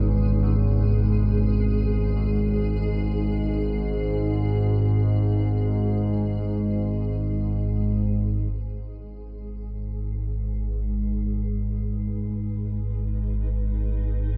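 Desolate and dark, this free-time dark ambient drone excerpt in G# minor rests on an up-front, chorused analog drone of sawtooth and pulse-width tones that takes a filter sweep from 8.5 seconds, beneath a cloudy, blurred granular pad steeped in its own reverb that fades out over the first 8.5 seconds and then fades back in, while very quiet carillon bells with a worn iron clapper play arpeggios until 5.6 seconds and a close-miked, metallic bronze singing bowl rings until 8.5 seconds, set in a light small-room ambience.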